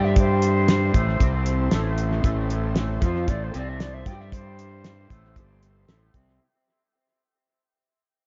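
A reedy, airy flute solo carries the melody with dub echo over a fuzzed, overdriven bass, a cloth-damped thuddy drum kit with a fat snare, a slightly broken-up lo-fi guitar riff with flanger and a very quiet buzzy combo organ holding chords, all in a dark, mysterious psychedelic rock fade-out at 116 BPM in A minor.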